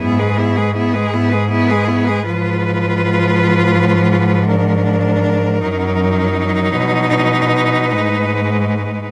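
Melancholic and solemn, this brief classical excerpt for four solo bowed cellos moves in a rubato 6/8 at about 53 beats per minute, its harmony passing from E/G# through Fdim/Ab and Ebm/Gb to B and Abm. The melody sits on top with a smooth, even tone, while an up-front, focused second line and a close accompaniment fill the middle, and the prominent bass colors its line with portamento and expressive vibrato. All four parts sound together for the full 9.1 seconds, their rich tone set in light reverb.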